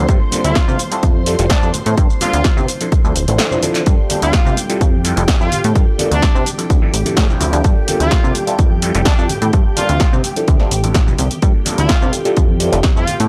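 Filtered disco house at 127 BPM in G dorian, sensual and funky, cut from a longer piece and cycling through Gm9, Fmaj7 and Dm7 with a drum fill at 3.4 seconds. An up-front punchy kick and plucky analog bass with a ring-modulated sawtooth bite drive the groove alongside a tape-warm drum machine of snare, handclaps, hi-hat and shaker, faint ringing congas and tube shaker in a large room, and a barky, overdriven reed electric piano with fast tremolo and phaser, all pumping except the kick and congas. A dark, lush string machine with ensemble chorus sits in the background while a bright horn section with light vibrato and analog delay carries the melody from 0.4 seconds, in a dry, gritty hardware sound.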